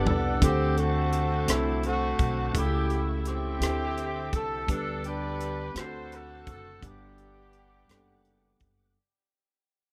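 A short fill on a tight funk drum kit opens this slow, soulful gospel piece in 6/8 at 56 BPM. From 0.4 seconds the music fades out over a jubilant progression in G major, moving from D7 through A7/C# and D9sus4 to a closing Gmaj7. A horn section carries the melody with light vibrato, a roomy pop-style ensemble sound and a touch of tape echo. A mellow, clean tine electric piano fills in the accompaniment, while a reedy tonewheel organ holds sustained chords in the background, with key click, chorus vibrato and a fast rotary speaker. Up front, a woody, thumpy pizzicato upright bass on gut strings sits beside the small-room punch of the drum kit's kick, hi-hat, rim clicks and toms. The whole has a dry, rough home-demo feel and was cut from a longer piece.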